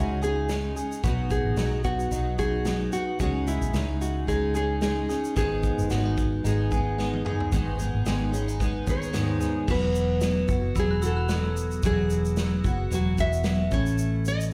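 A bright, fingerpicked nylon-string guitar carries the melody from the first moment of this sunny, heartfelt acoustic pop excerpt in E major, over a full-bodied, double-tracked, picked steel-string dreadnought up front and a round, foam-muted vintage bass that sits dark and punchy beneath them. A natural country drum kit joins at 0.2 seconds with a punchy kick, medium-tuned snare, shaker, toms and crash, moving at 111 BPM in 4/4 with a light sixteenth-note swing. A clean, compressed and scooped electric guitar, recorded direct, weaves picked arpeggios through the first part before dropping out at 10.2 seconds. A drum fill leads into a brief new section, and the harmony moves from C#sus2 through B and G#m before opening onto Esus2 and finally A. Near the end, a metallic, bell-like glockenspiel struck with hard plastic mallets rings softly in the background from 10.8 seconds. Slapback and tape echo color the nylon guitar, electric guitar and glockenspiel, and the whole performance sounds like a live gig heard through a club's PA, with small-room ambience and club reverb.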